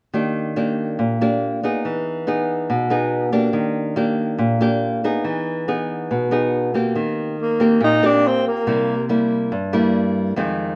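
A light reverb gives this brief fragment of a longer piece a soft, airy sheen, and the whole thing sits slightly below standard pitch at A4 = 436 Hz. It is a sunny, breezy bossa nova in Eb major, moving at 141 BPM in a straight 4/4. A small, fingerpicked nylon-string guitar carries the accompaniment from the opening, sitting up front as it alternates between Ebmaj7 and Emaj7 before moving to Eb6 and C7 around 7.0 seconds. A breathy tenor saxophone enters at 7.4 seconds for a short, mellow solo phrase in a low, narrow range, ending at 9.1 seconds. Its intimate, whispered subtone, gentle vibrato, soft attacks and scooped notes lend the line a relaxed jazz character.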